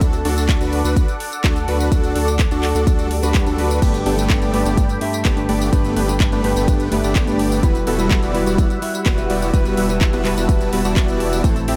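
Anthemic and euphoric, this short cut from a longer festival progressive house track drives along at 126 BPM in a straight 4/4, moving from D to Gadd9 at 3.8 seconds and on to Emadd9 at 7.6 seconds. A punchy electronic kick sits up front, joined by a layered house kit with metallic hi-hats, handclaps, tambourine and crash cymbal. A huge, detuned supersaw riff, thick with unison voices, a noise layer and vibrato, carries the hook through digital delay and sidechain pumping, while a saturated sine sub bass underpins it with deep, sustained notes. Behind them, a lush, slow-attack pad holds bright sustained chords through chorus and phaser, breathing with the same pumping. A brief electronic swell appears in the background from 3.1 seconds, ushering in a dark, clean, fingered electric guitar at 3.8 seconds that adds accompaniment through delay, all set in light digital ambience.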